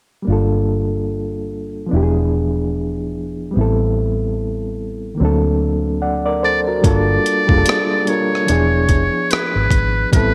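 A bright, 1980s-style digital sheen with light reverb frames this smooth, soulful neo-soul R&B excerpt at 73 BPM, where a reedy, overdriven electric piano with fast tremolo and a dark, round, foam-muted electric bass carry chords like Gm9 and E7b9 from the start, a buzzy, thin metal-muted trumpet takes a close-miked jazz solo with light vibrato and scooped notes at 6.4 seconds, and a gritty, tape-warm sampler-style boom bap kit of hi-hat, thumpy kick and rim click arrives with gated reverb at 6.8 seconds.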